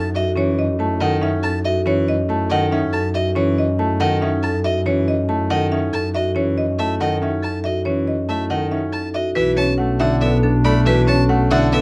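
Meditative and hypnotic, this short cut from a longer minimalist classical piece pulses in 7/8 at 280 BPM in eighths with a straight feel in F# dorian, moving from F#m7 to Bm9 at 9.4 seconds. A woody, percussive marimba with hard mallets carries the melody over a second, rounder, darker marimba with soft mallets and a smooth bowed violin weaving arpeggios, while a clear concert grand piano with long sustain adds accompaniment and an expressive double bass, bowed with vibrato and portamento, sits up front. At 9.4 seconds a mellow, distant clarinet enters quietly in the background on a second line, all captured with close, detailed microphones and little reverb.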